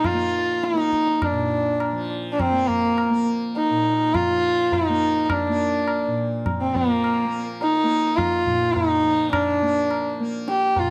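A nasal, earthy sarangi sings up front from the first moment, its single bowed line gliding with portamento, light vibrato and the ring of sympathetic strings over a buzzing, shimmering tanpura drone and low-tuned tabla with a short ring. This radiant, serene Hindustani classical excerpt moves in a straight 7/4, with the softly plucked drone and the small-room tabla sitting well beneath the melody. The sound is that of a dry, close 1970s-style studio recording touched with light reverb.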